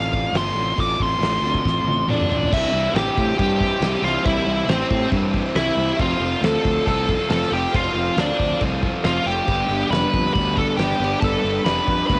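A dark, distorted, bluesy lead guitar sits up front and opens this restless, cathartic quiet-loud alternative rock excerpt with a solo over a loose indie drum kit's fill at 1.7 seconds, then rides over a raw, double-tracked garage guitar riff, a growly, punchy fuzz bass, fat snare and dark cymbals in a small room, and a silky string machine that enters in the background at 3.3 seconds, all moving through F, C and G at 138 BPM with the character of a home cassette recording.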